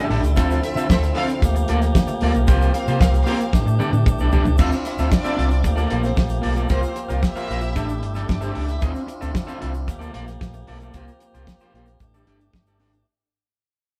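A sultry, glamorous disco groove in straight 4/4, cut from a longer piece and heard as a band playing live together in a stone room with moderate reverb. A dry, damped 70s drum kit sits up front with a fat snare and tight kick, alongside an overdriven fingered electric bass that sounds punchy and amped, while a grainy egg shaker sits in the background. A twangy electric guitar at the edge of break-up provides the accompaniment, and a tonewheel organ holds sustained chords with key click, vibrato and light overdrive. A lush, clear studio string section carries a second line from 0.6 to 8.8 seconds, bowed with vibrato and close, focused ensemble tone. The harmony circles through Dm9, Gm9, C7sus4 and A7sus4, a drum fill arrives at 3.5 seconds, and the music fades out from 4.6 seconds to the end.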